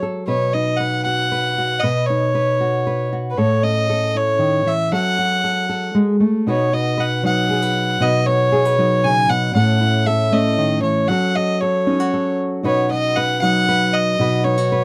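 Warm and peaceful, this folk piece in 3/4 at 116 BPM in B mixolydian, cut from a longer piece, sets a nasal, reedy fiddle with a gut-string tone and smooth top, bowed by one player and entering at 0.3 s, over a fingerpicked classical nylon-string guitar with audible finger squeaks. Both sit up front in a dry, close 1970s-style studio sound with light reverb as the Badd9, A and F#m progression runs through its phrase twice, the second pass starting at 6.5 s.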